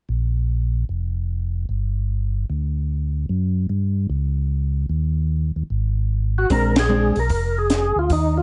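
Soul jazz organ trio music with a swinging, soulful mood and a swung feel, cut from a longer piece. A mellow tonewheel organ carries the bass line from the opening, its round, lightly overdriven tone shaded by chorus vibrato and a slow rotary speaker, and it sits up front through a harmonic path that passes through a chordless stretch before a suspended chord. At 6.4 seconds a second, percussive tonewheel organ takes the melody with a fat sound, key click and second-harmonic percussion, also turning through a slow rotary speaker. At 6.5 seconds a clean, compressed hollow-body electric guitar adds brief picked accompaniment, and a compact cocktail drum kit enters with hi-hat, ride, a punchy kick and a high-tuned snare, sounding smooth and close in a small room. The harmony arrives on a Bb9 chord at 6.5 seconds, and the band hits an accent together at 6.7 seconds. The production is dry and dark, with a rolled-off top end.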